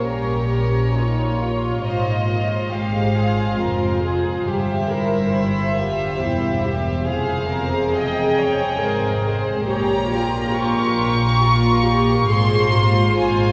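Cinematic orchestral film score in F minor at 69 BPM in a rubato 3/4, hopeful and uplifting, where a clear, floating violin section carries the melody above a rich, distant second violin line, an intimate viola section with light vibrato, a smooth cello section and a dark, woody double bass section, all bowed sul tasto, every part beneath the melody with soft attacks, and set far back in a wet cathedral reverb.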